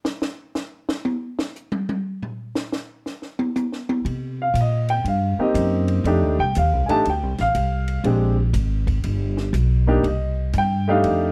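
A compact cocktail drum kit with dark cymbals, a high-tuned snare and a punchy kick opens this playful, swinging small-group jazz clip with a short solo. A woody pizzicato upright bass joins at 4.0 seconds, just before the solo ends at 4.1 seconds, and an up-front baby grand piano with a warm, natural tone enters at 4.4 seconds to accompany over minor-seventh and thirteenth chords, all in a light reverb.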